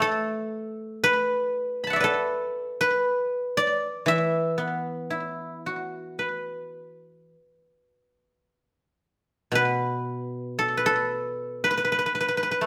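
A moderate stone-room reverb surrounds this short live recording, with a slapback echo trailing the instrument. It is a flowing, elegant piece of Chinese traditional music, cut from a longer work, moving at a free, rubato pace around 58 BPM in 4/4. A solo acoustic guzheng, played with fingerpicks, carries the whole 12.7 seconds. It sits up front, its silvery, ringing tone spanning B2 to B5. The music shifts into a new section at 8.5 seconds and continues there until the close.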